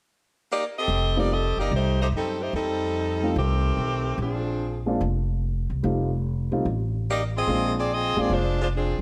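A tight, up-front saxophone section with vibrato carries the melody from 0.5 seconds in this brassy, energetic big band swing excerpt at 146 BPM in F mixolydian, over a woody, thumpy pizzicato upright bass on gut strings and a warm concert grand piano with deep bass comping F9 and Bb9 chords, all set in light reverb.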